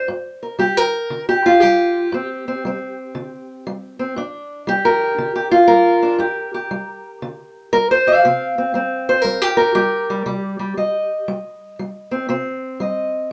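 Captured live in a small, reverberant room, this brooding acoustic country blues excerpt places a dark, boxy parlour-style steel-string guitar up front. The lone fingerpicked guitar carries the whole excerpt at 118 BPM in a swung 4/4, moving through G minor with a soulful feel and shifting to C minor at 8.2 seconds.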